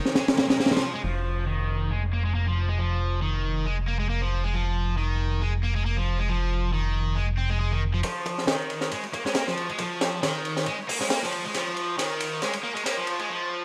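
A lightly swung sixteenth-note breakbeat drives this funky, playful excerpt, with the crunchy drum kit playing only briefly at the opening before dropping away and returning at 8.0 seconds. An overdriven, double-tracked electric guitar riff runs throughout, bright and picked yet coloured by vintage 12-bit sampler grit, a low-pass filter and delay. From 1.0 to 8.0 seconds a fat analog bass holds a single low note, its nasal, detuned sawtooth-and-square tone shaped by a filter pluck and a sustained body. When the drums come back, the small-room acoustic kit sounds saturated and gritty, with a punchy kick, a high-tuned snare and a rolled-off top. The final stretch becomes a build-up under a filter sweep, capped by a drum fill, all framed by light reverb, studio ambience and a dark, warm production.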